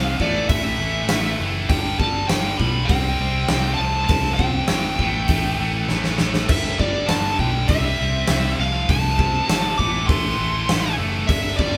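A straight 4/4 hard rock groove at 100 BPM in A minor drives this menacing, heavy fragment, with a huge arena drum kit up front, its boomy kick, medium-tuned snare and bright cymbals ringing in a big room, plus a drum fill from 5.9 to 6.5 seconds. A scooped, high-gain, double-tracked guitar riff, picked and up front, sits over a round, punchy fingered electric bass, while a smooth overdriven lead guitar carries the melody between D5 and D6 with a slapback echo. The chords move from A5 through G, C5 and F5/C before cycling again to land on Am, all captured as a band playing live in one room with moderate studio reverb.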